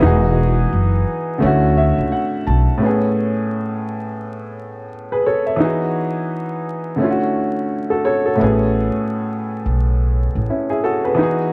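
A clear upright piano sits up front in this cosy, dreamy lo-fi hip hop cut from a longer piece, its natural, woody tone softened by a low-pass filter as it carries the accompaniment from start to finish. The groove is in 4/4 with a lazy swing on the sixteenths, and the harmony drifts through lush ninth chords, Emaj9 to Dmaj9 to Amaj9. A piano fill arrives at 1.4 seconds and runs into the second section, which begins at 2.8 seconds. An acoustic upright bass, plucked on steel strings with a warm, up-front sound, anchors the opening and then returns at 8.4 seconds. A small room reverb and a bed of vinyl crackle give the whole piece a hazy, intimate feel.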